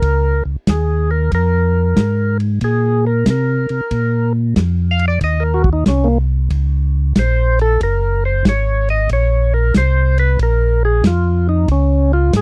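A swung 4/4 groove from a dry, dark-cymballed soul drum kit with a tight kick drives this smoky, late-night soul jazz organ trio excerpt, where a percussive, key-clicking tonewheel organ solos over a round, mellow tonewheel organ bass line, both turning through slow rotary speakers as the harmony moves from Bbm7 to Ebm7 and back in a close, 1970s-style studio sound.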